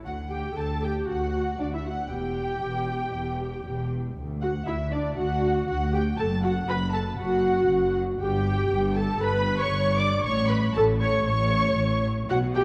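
In a flexible, rubato 4/4, this lively and graceful excerpt from a quick classical-period movement for string orchestra spends its 12.6 seconds in a single section, with every string section muted. The viola section carries the lush accompaniment up front, matched by a forward double bass section and underpinned by cellos with light vibrato and a soft attack. Above them, the symphonic violins sing a veiled melody while a more distant studio violin section traces a second line, all set in a wet concert-hall reverb within a dark production.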